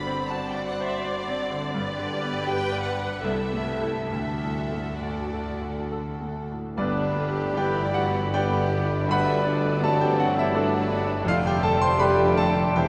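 Passionate and lush, this romantic classical excerpt for piano and orchestra moves in a rubato 3/4 at 65-84 BPM in G major. A clear, open concert grand with deep bass carries the melody up front over a background of richly vibrato violins, one section singing the tune and another a smooth second line, focused violas, very quiet cellos and distant double basses. At 6.8 s the pure flute group, mellow cor anglais, clarinet, dark bassoon, horn and trombone sections, and a very quiet vintage-toned tuba join, all bathed in a long, wet cathedral reverb.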